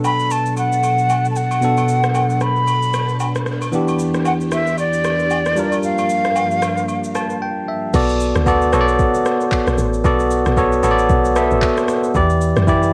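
A deep, late-night amapiano cut opens on a bright, bell-like tine electric piano, a swirling phased string machine pumping in the background, a soft, tape-warm R&B drum kit of kick, rim click, handclaps, shaker and crash, and compressed acoustic agogo bells and woodblock, while a breathy concert flute with vibrato and tape echo carries the melody up front; during a piano fill the percussion and flute fall away, the strings follow, and a woody, punchy log drum bass drives the drop from 7.9 s beneath the piano and drums, with cassette tape colouring the piano, strings, drums and flute.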